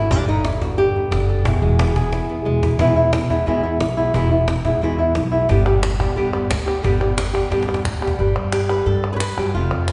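A straight 4/4 pulse at 178 BPM drives this passionate, dramatic flamenco fragment, cut from a longer piece, with the harmony moving from G to E and back to G. Up front, a boxy, fingerpicked flamenco guitar carries the melody from E2 to C#5, with audible finger squeak and a solo passage in the opening 2.8 seconds. Beneath it, a pizzicato upright bass with steel strings gives a woody low line, while a cajon struck with hard hands adds faint snares, a small-room character and fills that mark the ends of sections before it stops at 8.2 seconds. Crisp, close and dry palmas hand claps join at 5.7 seconds and carry on to the finish. A wet concert-hall reverb with a long tail surrounds the performance, and the top end is soft and rolled off, keeping the sound dark and resonant.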